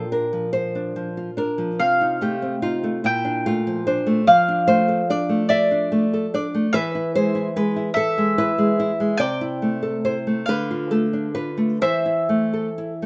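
A romantic duo for mandolin and nylon-string guitar unfolds in a slow, rubato 6/8, its mood yearning and solemn. The mandolin carries the melody in a narrow upper register, its picked double strings giving a round, mellow tone placed up front. The fingerpicked guitar supplies the accompaniment, small-bodied and warm, sitting just as close as the mandolin and ranging from deep bass notes up into the melody's territory. The harmony drifts from a Bb opening through F7/C and Bbmaj7 before settling toward A minor around 4.3 seconds, then moves through E, Am/C and Dm6 to close on Am/E. Both instruments play together throughout this short excerpt, cut from a longer piece, wrapped in a light reverb.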